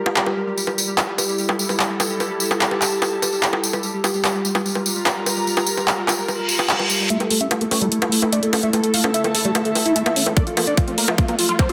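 An overdriven, up-front drum kit of bongos, handclaps and bright hi-hats drives this intense 147 BPM psychedelic trance excerpt, joined by a jingly tambourine, a pulsing, sidechain-pumped chord texture and an airy, warbling pad, until a reverse cymbal and riser arrive at 6.4 s ahead of a build-up at 7.1 s, where a squelchy, resonant acid bass and a thick, detuned unison lead both sweep through filters with phaser and delay, capped by a drum fill at 10.4 s as a tight electronic kick enters, all in a dense, heavily limited mix.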